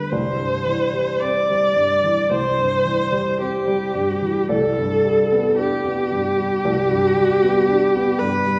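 A single bowed viola leads with a rich, focused melody full of vibrato, sitting up front in this tender, lyrical romantic classical duo, played in C major at a rubato 54-58 BPM in 4/4. A warm, intimate baby grand piano accompanies throughout the 8.6 seconds, its action noise audible, as the harmony moves from C to G/C at 4.5 seconds. A wet recital hall reverb places the pair as if heard from further back in the room, and the passage is cut from a longer piece.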